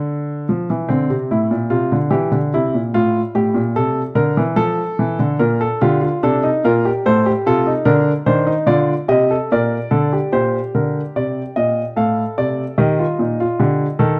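A high F5 on solo grand piano rings out at 0.5 s, opening this stately, joyful excerpt from a baroque-style three-part fugue in Bb major, moving at 73 BPM in a straight 3/4. The piano sounds natural and up front, ranging from A2 to F5 as its voices pass through chords such as Edim, F/A and Bb, with a second passage arriving at 10.3 s that moves through Gm/Bb to Eb. A moderate stone-room reverb and a dark, warm production give the instrument a resonant setting.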